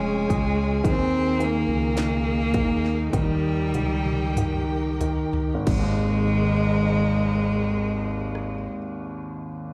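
Emotional and hopeful, this pop ballad fragment from a live club gig has a close, focused solo cello singing the bowed melody with vibrato and a slapback echo. An intimate concert grand piano, with audible action noise and long sustain, shares that echo, while a distant studio string section holds soft-attack chords with portamento over a dark, round fretless bass and an electronic house kit of punchy kick, cracking snare and crisp hats. The opening slows down as a drum fill runs from 3.1 s into an Abadd9 chord at 5.7 s, and the piano rings on by itself after the other parts stop at 8.7 s.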